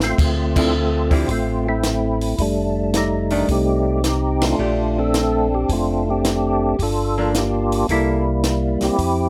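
A swung 4/4 groove at 109 BPM kicks off with a drum fill from a compact cocktail kit, dry and up front with a punchy kick, high-tuned snare and dark cymbals, as this greasy, bluesy soul jazz organ trio in D minor hits band accents at 0.5 and 4.3 seconds. A fat, percussive tonewheel organ carries the melody with key click, chorus vibrato and slow rotary speaker, while a round, mellow organ bass on slow rotary sits underneath. A clean, picked hollow-body archtop guitar comps from 0.6 to 8.2 seconds over chords moving from Dm9 through F13 and Bbmaj13 to Gm7 and C6, heard through close, detailed microphones and light reverb.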